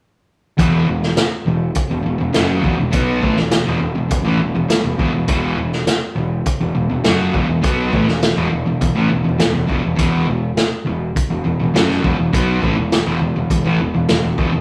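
This classic rock excerpt moves at a straight, confident 102 BPM in 4/4, with a sunny mood despite its heavy tone. Two sludgy, overdriven electric guitars play picked riffs in a low register around an E5 chord, their dark tone giving the track its weight. Beneath them, a fingered electric bass delivers a bright, growly line captured direct, sitting deep in the low end. An acoustic vintage drum kit sits up front with a punchy kick, a medium-tuned snare and hi-hat, its sound mid-forward with a rolled-off top. The band plays live together in one room, with a moderate stone-room reverb of 1.2 seconds, and all parts run from 0.6 to about 14.6 seconds as a single section cut from a longer piece.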